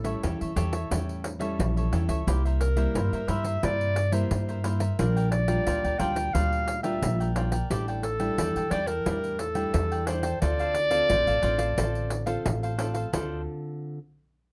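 Lively and nostalgic, this samba and choro excerpt puts a mellow, classical-style solo clarinet up front on the melody over a woody, thumpy pizzicato upright bass, with crisp picked cavaquinho, fingerpicked nylon-string guitar lingering until 14.0 seconds, and jingly, dry pandeiro struck with hard hands, all captured by close, detailed microphones in light reverb with a faint mains hum beneath.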